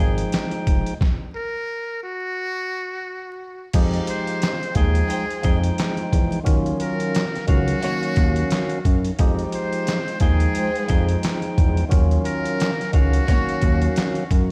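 A swung 16th-note boom-bap groove at 88 BPM in 4/4 drives this dark, tough hip-hop cut in F phrygian. Its gritty, pitched-down sampler-style drum kit sits up front, with a thumpy kick, medium-tuned snare, hi-hat, handclaps and crash. A smooth sawtooth-and-square synth bass with vibrato holds the low end. A fat, lightly overdriven tonewheel organ with a percussive attack and a cassette-tape tint plays over Fm9 and Ebm9 chords. Above them, a buzzy, breathy trumpet in a metal mute carries a jazz-style solo melody with scooped notes and vibrato, trailed by delay. After a stop from 1.0 to 3.7 s, a very quiet, airy detuned unison pad with chorus and phaser enters. From 5.1 s a soft-attack, sul tasto string section adds delayed stabs in the background. The mix carries little reverb, yet it sounds as if played on a big system in a bare stone room, with vinyl crackle on top.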